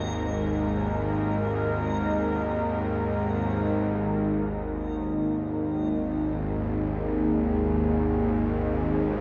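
Unsettling dark ambient drone, cut from a longer piece, in which a tense, string-like bowed drone sits low and up front beneath a deep, mellow, chorused pad holding sustained chords through 9.2 seconds, while faint bronze carillon bell arpeggios ring only until 1.2 seconds and a reversed, dreamy swelling texture lingers in the background until 3.8 seconds, all bathed in a huge, wet reverb that evokes a vast echoing space with a cassette-tape grain.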